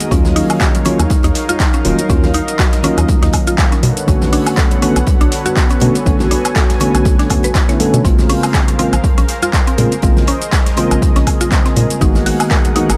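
A smooth, late-night deep house excerpt at 121 BPM in Eb minor, where a punchy, overdriven electronic kick and hollow, knocking FM bass with tube saturation drive a swung groove of metallic hats, handclaps, shaker and woodblock, soft congas and a very quiet, crisp acoustic kit, while worn, slightly out-of-tune electric piano stabs with digital delay, a woody mallet-like pluck arpeggio with dub echo, and sidechain-pumped sawtooth and breathy pads move through Ebm9, Bm9, Bbm9 and Abm9.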